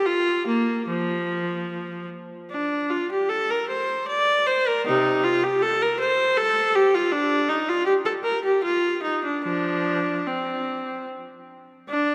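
This is a classical, baroque-style suite movement for unaccompanied viola, heard as a short excerpt cut from a longer piece. The mood is radiant and dance-like, moving in 3/4 at roughly 71-81 BPM with a flexible, rubato feel. A single bowed viola carries everything from 0.0 to 12.1 seconds, ranging from C3 up to D5 with a clear, intense tone and vibrato. The instrument sits up front, yet it is surrounded by a wet church reverb with a long 3.7-second decay that lets each note ring into the space. The tuning sits slightly below standard, at A4 = 439 Hz.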